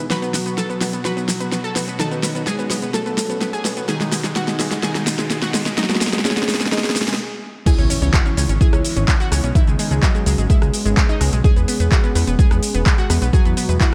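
A straight progressive house groove builds through a drum fill on an overdriven deep house kit, with fat snare, metallic hats, handclaps, shaker and rim clicks, then stops briefly before the deep, up-front electronic kick lands the drop at 7.7 seconds. Underneath, a thick, detuned analog bass and a warbling, vintage-toned pluck arpeggio pump with sidechain movement, while a mellow supersaw swell holds sustained chords in the background. On top, a dark, clean, fingered electric guitar carries the melody with tape echo, shadowed by a very quiet, pure FM bell line, and a faint riser and impact sweeps the build into a dreamy, expansive mood.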